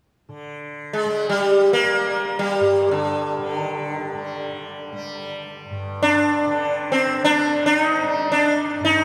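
Indian classical music in free time unfolds with an introspective, meditative calm in this short passage cut from a longer piece. A softly plucked tanpura sets up a bright, buzzing drone from 0.3 seconds, sitting low and quiet beneath the melody. The sitar enters at 0.9 seconds and stays up front, its plectrum-plucked lines ringing with the shimmer of sympathetic strings. Its tone is bright and buzzing, carrying the melodic thread over the steady drone. A long, wet cathedral reverb surrounds both instruments, giving the sound the spacious bloom of a church or concert hall.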